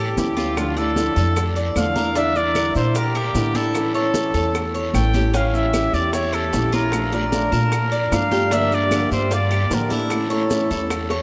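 A straight 4/4 Cuban son and guajira groove carries this nostalgic, sultry piece, with a clear, punchy, vintage trumpet taking the solo melody up front with light vibrato over a thumpy pizzicato upright bass, a bright, metallic tres picking double-string arpeggios, and a dark, fingerpicked nylon-string guitar in accompaniment, while very quiet tight bongos, soft-handed, damped congas and woody claves sit alongside raspy guiro and grainy maracas in the background, all of it set in a vast, echoing cathedral space.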